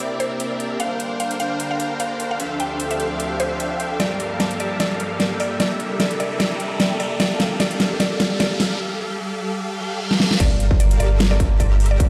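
Huge, detuned supersaw chords drive this dreamy, lush future bass excerpt at 150 BPM in a half-time, lightly swung feel in G dorian, their riff coloured by phaser, chorus, a low-pass filter and tape echo, and pumping against the beat alongside a bowed, reedy string section holding sustained chords. A woody FM mallet pluck carries the melody with chorus and digital delay, while a dubstep kit with a huge snare and metallic hats plays through a build-up with fills from 4.0 seconds and a break at 8.8 seconds, and a very quiet riser, reverse cymbal and impact thread underneath. At 10.4 seconds the drop lands with a thick, saturated sub bass and a distorted electronic kick, all set in a lush hall reverb and the stone-room echo of a big sound system.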